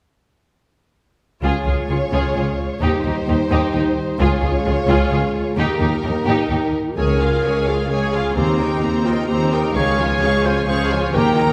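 In triple metre, this heroic, triumphant cinematic cue opens at 1.4 seconds with lush bowed strings: violins carry an expressive, vibrato-rich melody over a second violin line, rich violas, and cellos and double basses holding the bass, while a mellow, distant French horn section sustains chords until 6.7 seconds. A dark, roomy solo clarinet adds a second line from 6.5 seconds, and a ringing fingerpicked concert harp joins in the background with arpeggios at 7.0 seconds as the harmony rocks between Db and Eb. The whole ensemble sits in a church or concert hall with a generous scoring-stage reverb, and the passage is cut from a longer piece.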